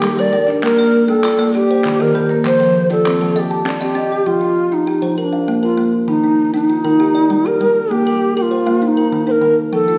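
Hypnotic and rippling, this short cut from a longer southern African traditional piece in a straight 12/8 sets an airy, chiffy low wooden flute melody up front over a bright, ringing kalimba's interlocking arpeggios, joined at first by dark rosewood marimba and close, dry group handclaps that drop away before 5 seconds, all bathed in the lingering reverb of a church or concert hall.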